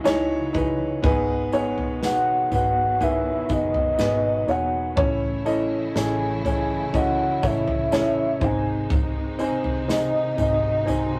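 A soft, octave-layered synth lead carries the melody from the first moment, its round, full tone blending triangle, sawtooth and sine layers over a sub octave, with a fast attack, long sustain, vibrato, and a shimmer of chorus and tremolo. Close beneath it sits a baby grand piano, up front and intimate, its natural sound including audible action noise as it plays the accompaniment. A lush, bowed string section holds sustained chords from a distance, expressive with vibrato and portamento. A dark, foam-muted fingered electric bass gives a round, amped low end in the background, while a loose indie drum kit adds a punchy kick, a medium-tuned snare and toms with a mid-forward, small-room character, and a jingly tambourine sits quietly behind them. This longing, emotional pop ballad fragment moves through C#madd9, G#m, A and G#, all in a small room with a rough rehearsal-room feel and tube saturation.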